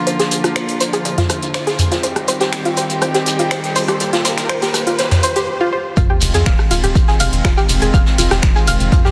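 Melodic techno with a dramatic, cinematic mood, this short passage is cut from a longer piece and moves in a straight four-four pulse through a build-up that breaks briefly before the drop at 6.0 seconds. A soft, round pluck carries the arpeggios with chorus, delay and sidechain pumping while a filter sweep opens it across the build, and a studio string section with gut-string tone and light vibrato holds reedy sustained chords that also pump. Beneath them, a tight sequencer bass gives a saturated, driving sawtooth pulse, kept very quiet, as a faint electronic riser and sub drop sit low in the mix. The house drum kit supplies crisp hats, finger snaps, ride, rim clicks and toms, joined by a vintage brush kit with a rolled-off top and a grainy shekere set back in a small room. At the drop a punchy, layered electronic kick arrives up front with an impact, the harmony moving from Bb and Cm to Fm7, all set in a lush hall reverb on a dense, heavily limited master.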